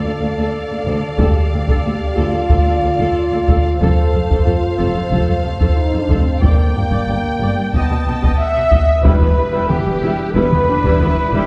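Heard from further back in a wet scoring-stage space, this heroic, dramatic cinematic orchestral excerpt sets a rich, focused violin melody over a soft-attack portamento second violin line, expressive distant violas, smooth-topped cellos, double basses in the background and dark, roomy French horn chords, with close hard-stick taiko entering at 1.2 s before a pure concert flute and a very quiet trumpet's stabs arrive at 8.4 s, and a mellow woodwind section and a present tuba join at 9.0 s as the harmony moves to Em.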